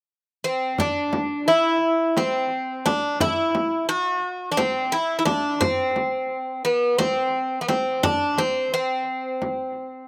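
Turkish makam ensemble music in a straight 7/8 at 174 BPM, melancholic and longing in mood and tuned to A4 = 439 Hz: this fragment of a longer piece opens with a picked acoustic Greek bouzouki carrying the melody up front from 0.4 seconds, its metallic double strings, some doubled at the octave, ringing with a slapback echo, while from 0.8 seconds a close, dry frame drum played with hard hands adds warm percussion with its own slapback echo, all captured outdoors with little reverb.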